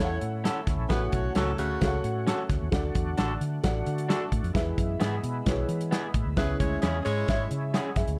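Joyful and warm, this short cut from a longer piece is uptempo 1960s-style soul in a straight four. An acoustic drum kit sits up front from 0.2 s, with a punchy kick, a medium-tuned snare and a rolled-off top, while a vintage foam-muted electric bass, played with the fingers, adds a round, amped low end. A dark upright piano supplies woody, boxy accompaniment with long sustain, and an overdriven tonewheel organ holds gritty, thick chords in the background, colored by chorus vibrato and a slow rotary speaker. An electric guitar through a small old amp adds slightly broken-up, lo-fi, compressed stabs from 0.4 s. A close-miked, jazz-style saxophone section plays a second line with slapback echo at the opening and again from 6.4 s, all over light reverb, a dark, warm production and a progression moving from A through F#m/A, D and E to C#m.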